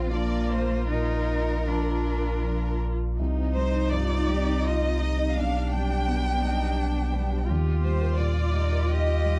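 A deep, clean sine sub bass sits up front beneath this fragile, longing neoclassical piano-and-strings passage in C minor, moving in a rubato 3/4 at 75-87 BPM, where a rich chamber violin section carries the vibrato-laden melody over a smooth, even cello second line, a focused solo viola, and a soft felt-muted upright piano with audible action noise in the background, while a very quiet, glassy FM pad with chorus and phaser enters at 0.1 seconds, all in a dark, lightly reverberant production that shifts from Bb to Cmadd9 at 3.2 seconds and closes on Ebadd9.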